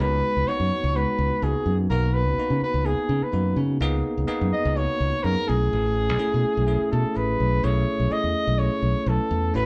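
Electric jazz fusion in C# minor at 126 BPM, this intense, driving cut from a longer piece moves in a straight 4/4 over C#13sus4 before shifting to B13sus4 at 5.5 seconds. A bucket-muted trumpet carries the melody with a veiled, mellow tone, vibrato and forceful jazz phrasing, while a bell-like tine electric piano adds clean accompaniment. Underneath, a punchy fingered electric bass sits up front, and the band plays together live in a large studio with moderate reverb.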